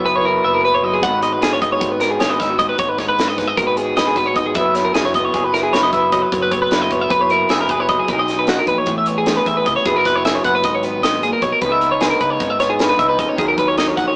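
A straight 9/8 pulse at 306 eighth-note beats per minute drives this intricate, wistful slice of math rock and midwest emo, with a crisp fusion drum kit (airy, polished, a high-tuned snare and tight kick over hi-hat) entering at 1.0 s beneath a bright, clean twelve-string electric guitar spinning picked arpeggios up front. Alongside it, a dark, slightly broken-up electric guitar through a small old amp plays fingered, lo-fi accompaniment, while a round, amped picked bass sits low in the mix, moving through F#7sus4 and G#m7 before a second section at 8.1 s opens onto B69, Amaj9, G#m11 and C#m9. A moderate stone-room reverb and rough rehearsal-room character give the whole excerpt a small-speaker feel.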